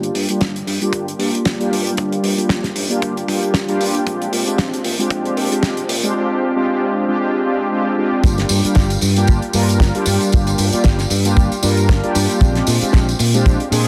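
A swung 4/4 groove at 115 BPM drives this sunny, feel-good nu-disco excerpt, with a tight, dry kick entering at 0.4 s beneath a damped 70s kit whose fat snare, hi-hat and tambourine have a rolled-off top. A fingered electric bass, warm and direct, holds down the low end while up-front mellow synth brass, round, detuned and dark with chorus, vibrato, cassette-tape colour and digital delay, sustains Gm7 and Bb13 chords. A build-up gives way to a drop at 8.2 s, all set in a moderate plate reverb with a heavily compressed, radio-like sound.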